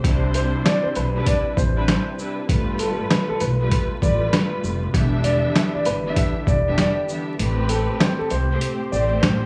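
A swung boom-bap groove at 98 BPM in 4/4 drives this tough, gritty hip-hop excerpt in A minor, built on a compressed, pitched-down sampler-style kit with a thumpy kick, medium-tuned snare, hi-hat and shaker that sits up front with a tape-soaked, small-room character. Beneath it, a woody pizzicato upright bass on gut strings anchors the low end, while a lush, bowed symphonic string section with soft attacks and expressive vibrato carries the accompaniment through a cassette-tape haze, filtering and plate reverb. A very quiet, fat tonewheel organ holds sustained chords, lightly overdriven with key click and a fast rotary speaker. From 0.3 seconds, a dark, mellow upright piano with a vintage feel traces a smooth melody in a narrow upper register, also filtered and bathed in plate reverb. The harmony moves from Cmaj7 through G9 and Em7 to Am9, and the kick drops out at 7.4 seconds, letting the final chord hang over vinyl crackle and a moderate studio reverb.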